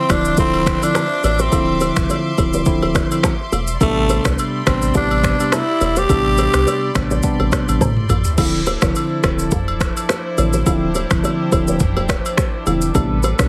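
A growling tenor saxophone leads this mellow, sultry afrobeats excerpt, its raspy, breathy tone full of scooped notes and treated with tape echo as it plays a jazz-style solo up front until 7.1 seconds. Underneath, the piece moves at 105 BPM in 4/4 with a light 16th-note swing, in D dorian, cycling between Dm9 and Am11. A clean tine electric piano, heard through its built-in speakers, supplies the accompaniment, while a distant string section holds soft, floating sul tasto chords. In the background, a dark, full-bodied nylon-string guitar plays a thumb-plucked riff with its own tape echo, and a thick, saturated sub bass anchors the low end. The electronic afro-pop drum kit sits prominently, with an overdriven deep kick, rim clicks, finger snaps, shaker, toms and crash, and a drum fill at 7.8 seconds leads into a new section at 8.4 seconds, while close, dry agogo bells and woodblock add egg shaker and group handclaps. 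A small room gives a modest ambience, and the heavily compressed mix has a radio sound.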